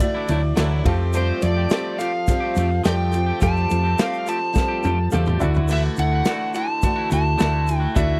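A straight 4/4 groove drives this short, jangly and nostalgic folk rock and heartland rock cut, carried by a natural country drum kit with bright cymbals and a punchy kick, a grainy tube shaker tucked in the background, and a round, up-front hollow-body electric bass entering at 0.3 seconds. A dark, overdriven slide guitar sings the melody over a twangy, compressed electric guitar riff with subtle chorus, a boxy parlour-style picked steel-string acoustic guitar and a woody upright piano with short sustain sitting in the back, as the harmony moves between Dadd9 and Fadd9. A drum fill from 4.6 to 5.7 seconds leads back to Dadd9, all captured in a dry, close 1970s-style studio sound with little reverb.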